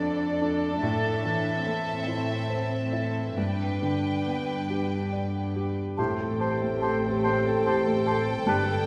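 A longing, sorrowful orchestral film-score fragment in a rubato three-four opens with a dark, sul tasto violin melody over a floating, distant second violin line, an intimate grand piano with audible action noise, background violas and a cello section on the bass, before a clear oboe, a very quiet clarinet, a hollow flute, mellow French horn chords and a double bass section join at 6.0 seconds, the whole heard from further back in a wet scoring-stage reverb.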